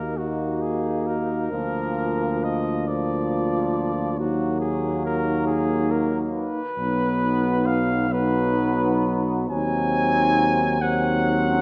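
Classical brass band music in a hymn-like, solemn and melancholic mood, this excerpt moves slowly at 45 BPM in a rubato 6/8 in E-flat minor, lasting just under 12 seconds and cut from a longer piece. An up-front cornet carries the mellow, smooth-topped melody with light vibrato, over a tight, close-miked French horn section on a second line, a clear, vintage-tinged euphonium and a distant, roomy trombone section with a looser feel in accompaniment, and a prominent tuba anchoring the bass. Moderate scoring stage reverb surrounds the ensemble as the harmony moves from Ebm through Bb/D and B to a closing Cdim/Eb at 9.5 seconds.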